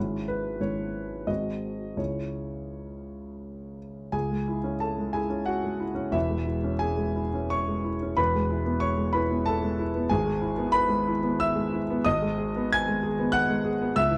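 This is a romantic classical character piece for solo piano in C# minor, moving in a rubato 3/4 at roughly 82-98 BPM with a brooding, bittersweet mood. A concert grand carries everything alone across the full 14.2 seconds, reaching from deep bass notes up into the high treble. The opening settles on C# minor harmony, passing through a G#7 before resolving home by 2.0 seconds. From 4.1 seconds a new passage begins, drifting through C# minor toward E major and closing on G# minor, which gives the fragment its shadowed, unresolved feel as it is cut from a longer work. The piano sits up front and sounds intimate and natural, with the noise of its action audible beneath the notes. Light reverb and a dark, warm production round out the sound.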